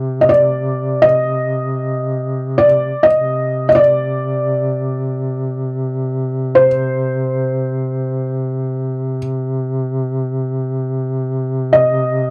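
A mellow duduk opens on a low C drone, with vibrato and scooped notes, sitting beneath a felt-muted upright piano that enters at 0.2 s and carries the melody high between C5 and Eb5, its soft, intimate tone louder than the drone and marked by audible action noise. This mournful, solemn Caucasian lament in C minor unfolds in free time and is cut from a longer piece. The dry, close recording recalls a 1970s studio, placing both instruments up front.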